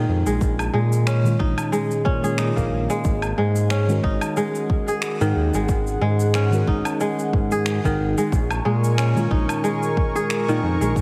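The rhythm sits at an unhurried 91 BPM in 4/4 with a light swing on the sixteenths, set by overdriven electronic shaker, woodblock and finger snaps from 0.3 seconds and a deep, overdriven electronic kick from 0.4 seconds, both layered and re-recorded in a large room. This short excerpt of organic downtempo feels meditative and earthy, moving from A#m7 to G#5 and back. A crisp, ringing kora plays fingerpicked arpeggios up front with tape echo, while a smooth sawtooth-and-triangle synth bass holds the low end with sustained, fast-attack notes. Beneath them, muted felt-like synth keys sit dark and intimate in the background, coloured by chorus, tape echo, sidechain pumping and the grit of a vintage 12-bit sampler. From 3.1 seconds a mellow, detuned analog pad adds soft-attack sustained chords with chorus and sidechain pumping. The whole mix carries light reverb and digital ambience, squeezed into a heavily compressed, radio-like sound.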